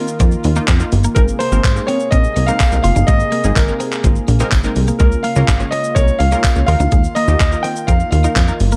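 A gated 80s drum machine sits up front with a thumpy kick, handclaps, hi-hat and shaker drenched in gated reverb, while a punchy, funky analog bass entering at 0.2 seconds pumps with sidechain compression in this euphoric, carefree dance-pop excerpt. An intimate concert grand piano with audible action noise and long sustain carries the melody through a digital delay, over chords moving from Ebsus2 to Abadd9 and Db6. Further back, a bright, detuned analog pluck and a smooth, mellow pad both pump under chorus, a clean, compressed twelve-string electric guitar picks a riff, and a very quiet, jingly tambourine joins at 0.7 seconds, all within a dark, warm production with light reverb and digital ambience.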